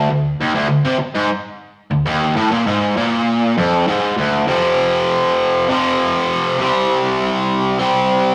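A rough rehearsal-room recording with warm saturation sets this short rock fragment in a stone room, whose wet reverb gives the sound a hard, echoing edge. A lone overdriven electric guitar carries everything, bright and picked, double-tracked and placed up front. The mood is menacing and aggressive, moving in a straight 4/4 feel. The opening bars hold off on any chord, then at 4.5 seconds the part shifts into a new section built on an F5 power chord, moving to C5 at 6.6 seconds. The guitar ranges from a low D2 up to C4, and the clip breaks off at 8.3 seconds, cut from a longer piece.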